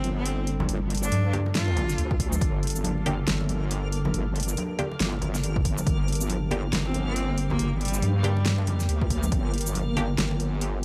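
Brooding and dark, this deep dubstep fragment rides a heavy, saturated wobble bass up front in a swung half-time feel, joined by punchy overdriven electronic kicks from 2.1 seconds, a fat-snared deep house kit with hi-hat and shaker, and soft-handed congas ringing with dub echo in the background. A clear, close bowed cello with vibrato sings brief phrases through dub echo over a moody, warbling ambient pad carrying vintage sampler grit. From 2.0 seconds a reversed, dreamy granular texture drifts in behind, while very quiet muted dub chord stabs with a resonant filter pluck flicker through, over a bed of vinyl crackle.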